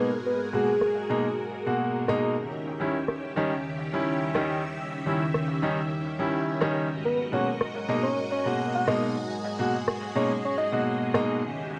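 A straight pulse of metallic, low-passed hi-hats and rim clicks sits in the background of this cosmic, sensual nu-disco fragment, while a clear concert grand with a deep bass and a touch of delay and a lush, vintage string machine shimmering with phaser and ensemble chorus carry the chords up front, and a round, dark synth lead with chorus, vibrato and delay sounds briefly at the start before returning at 7.0 seconds for its melody under a moderate plate reverb.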